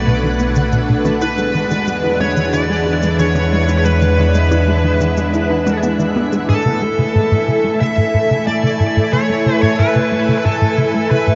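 A smooth, overdriven electric lead guitar carries the melody over a lush, vintage string-machine ensemble, an evolving analog drone and a faint, twinkling granular shimmer, opening this expansive, cosmic stretch of sequencer-driven space music. A tight, punchy sequencer bass riff enters at 0.1 s and an overdriven shaker and percussion blips sit in the background from 0.4 s, with the drone and percussion both stopping at 6.5 s as the chords move from Bm7 and E7 to Amaj7. The dreamy mix is soaked in a huge reverb, with shimmer trails on the guitar, strings and texture and tape echo on the guitar and bass, all in a cut from a longer piece.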